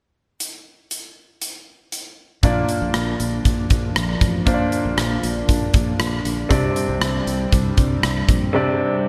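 A bright, glossy 1980s-style digital production, bathed in a lush hall reverb with a touch of small-room ambience, frames this nostalgic pop excerpt at 118 BPM in a straight 4/4 and Bb major. A big rock drum kit opens alone at 0.4 seconds with hi-hat, rim click and a punchy, up-front kick that carries a roomy, acoustic weight. At 2.4 seconds the rest of the band arrives over a Bb chord: a clear concert grand piano plays polished, present accompaniment with deep bass and short sustain, while a shimmering pulse-width pad holds slow-attack chords, its retro blend of pulse, sawtooth and square waves thickened by a sub octave and chorus. A sustaining fretless electric bass sits low beneath them, its tone direct and growly with a subtle chorus. The harmony moves to Csus2 at 6.5 seconds before the fragment breaks off.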